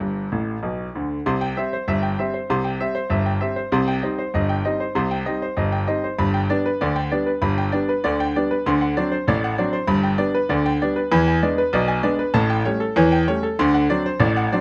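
Playful and cheerful, this short ragtime piano excerpt in a straight 2/4 features a bright, worn grand piano playing solo and up front from G1 to C6, with a brief fill at 0.3 seconds before it moves through a C to C minor turn and a chain of E7, A7 and D7 chords, captured dry by close, detailed microphones that bring out its brilliant, short-sustained tone.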